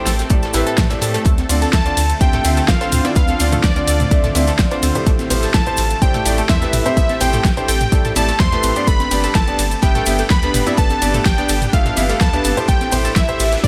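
Expansive and emotional, this progressive house excerpt in A minor at 126 BPM sets a catchy, detuned sawtooth lead with dub echo over a shimmering, ethereal pad, a gritty chorused analog pluck arpeggio in the background, sidechain-pumped clear baby grand piano stabs, and a round, dark analog bass moving through Am7, Dm7 and G, all driven by an up-front deep electronic kick entering at 0.3 seconds, an overdriven big-room dance kit with a huge snare, a very quiet modern studio kit, a grainy cabasa, and electronic congas and toms tucked behind from 1.4 seconds, with a generous studio reverb.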